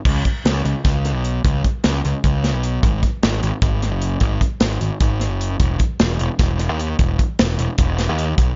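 From 0.1 s, a punchy, fuzz-drenched picked electric bass with overdrive and an up-front acoustic studio drum kit with bright cymbals, a medium-tuned snare, a tight kick and tape echo launch together into this intricate, playful math rock and midwest emo fragment, racing through 7/8 at 303 BPM in eighths with a straight feel in a dry, echo-heavy mix whose highs stop at 7.5 kHz.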